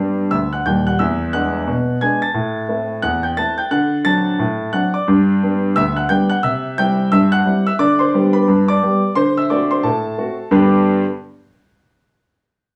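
A warm grand piano carries this short ragtime excerpt alone, sounding present, polished and up front from 0.0 to 11.0 seconds across a span from Eb1 to A6. The mood is cheerful and jaunty, set at 88 BPM in 2/4 with a 59% swing on the sixteenth notes, giving the steady pulse a lilting bounce. In G major, the harmony moves through E7, Am and D7 before returning to G, then passes through C, G/D and D7 to land back on G at 10.5 seconds, where a new section begins just as the clip ends. A wet club reverb with a short decay wraps the piano in a snug room sound over light studio ambience. Cut from a longer piece, the fragment feels like a brisk, good-humoured glimpse of a larger rag.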